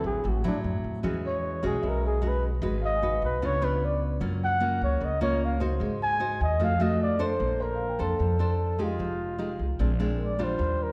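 Breezy and sophisticated, this bossa nova fragment moves at 151 BPM in 4/4 with a straight feel, settling into Bb major at 7.4 s. A dark, breathy flugelhorn with light vibrato carries the melody up front as a punchy jazz-style solo until 7.4 s, over a full-bodied, fingerpicked nylon-string guitar and a woody, thumpy pizzicato upright bass, while a warm, short-sustain grand piano sits in the background from 1.4 s. Moderate concert hall reverb gives the playing a roomy finish as the harmony passes through chords such as D9, Abm7 and Bbmaj9.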